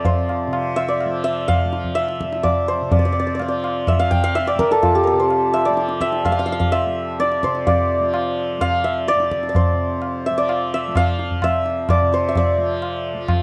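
Meditative and radiant, this Hindustani classical passage in raga bilaval is a brief 13.4-second stretch cut from a longer performance, moving in a straight five-beat cycle that speeds up. The hammered santur carries the melody up front, its bright, ringing tones shimmering across the upper-middle register. Beneath it, a mellow tanpura sustains a softly plucked, buzzing drone from start to finish, sitting low and gentle in the mix. The tabla keeps time throughout with a high-tuned, short-ringing voice, its sound compressed and saturated. The recording is dry and close, with the intimate, unadorned character of a 1970s studio session.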